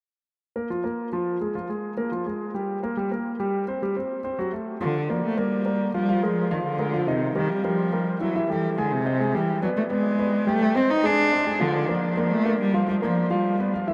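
A concert grand piano opens at 0.6 s, its warm, intimate tone carrying audible action noise, deep bass and long sustain as it lays down accompanying jazz harmony at a brisk straight-feel pace. The chords move through Fmadd11, Gmadd11 and Gsus4 before settling on Dm, giving this fragment of a longer piece a fiery yet sultry mood. At 4.8 s a single bowed cello enters up front with the melody, its dark, focused sound shaded by vibrato and a smooth top. Beneath it the piano's polished voicings shift through Gm7, Bb7 and Ebadd9 toward colourful turns such as Abmaj7#11/G before returning to Gm7. A huge, drenched reverb places both instruments in a vast, echoing space, with long tails hanging behind every phrase.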